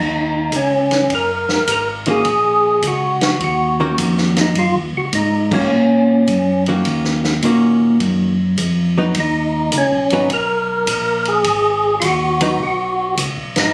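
A lightly overdriven, fat tonewheel organ carries the bluesy melody up front through a slow rotary speaker in this soulful soul jazz organ trio cut, over a round, dark organ bass with chorus vibrato, a punchy vintage drum kit entering at 0.5 s, and a clean, hollow-body archtop guitar accompanying from 2.1 s, with a band accent at 5.4 s and a change from Ebm7 to Abm7 at 9.2 s, all captured on a phone in a reverberant club room.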